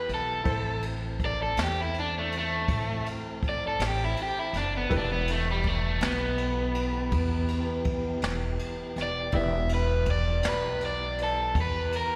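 Soulful and brooding, this slow blues in a straight 12/8 feel is cut from a longer piece and heard as a live gig through the venue's PA, with recital-hall reverb and small-room ambience around it. A raw, overdriven garage guitar, up front with slapback echo, solos throughout, while a thumpy, woody pizzicato upright bass and a brushed jazz kit with dark cymbals, a high-tuned snare and a boomy kick sit beneath it. In the background a brilliant upright piano with audible action noise and slapback echo adds accompaniment, and a round, clean tonewheel organ with key click holds sustained chords through a slow rotary speaker as the harmony moves from Am to Em.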